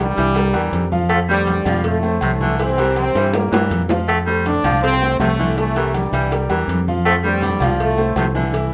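A bright, punchy trombone section carries the melody up front in this festive, danceable salsa excerpt. It is backed by a clear but boxy grand piano, a round, dark fingered electric bass and a breathy, whispered baritone saxophone with vibrato on a second line. Tight cowbell and bongos, ringing agogo bells and timbales, and very quiet, distant congas fill out the percussion, with a drum fill from 3.1 to 4.1 seconds, all in a moderate studio reverb.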